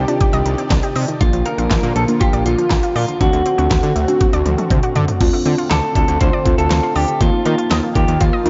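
A nocturnal, driving synth-pop excerpt at 120 BPM in 4/4 opens with the band already in motion: a slightly broken-up electric guitar carries the melody between F4 and C5, its picked, compressed tone trailing analog delay and shimmer reverb. Beneath it, muted, felt-like synth keys sit soft and dark in the background, while a lush, detuned unison pad holds sustained chords with chorus and phaser, and a round, nasal analog pluck spins bright arpeggios through delay and shimmer. A fat, thick sawtooth bass with a filter sweep stays up front, joined at 0.1 seconds by an electronic pop drum kit with a knocking kick, fat snare, crisp hats, handclaps and crash, its tape-tinged sound touched with analog delay. The harmony moves from Cmadd9 through Bb and D7, and a drum fill from 4.2 to 5.2 seconds leads into a new section built on Dm7 and Ebsus2. The echo-heavy mix has a light reverb and a rounded top end that keeps the whole piece dusky.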